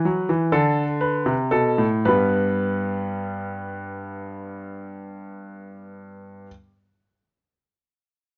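In a straight 6/8, this short cut from a longer classical piece is a baroque-style two-part invention for solo baby grand piano, stately yet lively, easing back in pace over its first 2.1 seconds as a dominant-seventh harmony gives way to a settled home chord. The piano sits up front with a clear, intimate tone, its mechanical action plainly audible and natural, moving through the lower and middle registers. Light reverb and a dark overall production lend the brief 6.5-second passage a soft, rounded glow.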